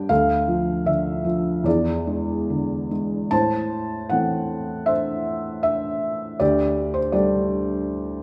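A felt-muted upright piano plays alone from the first moment, its soft, intimate tone sitting up front in a lyrical, melancholic classical excerpt that drifts with rubato at roughly 69-82 BPM in 4/4. Opening on D minor and E7, the music settles into A dorian at 3.3 s, moving through A minor to a Dsus4 at 6.4 s. A reflective recital-hall reverb with a 1.6-second tail surrounds the mellow instrument as it spans D2 to A5.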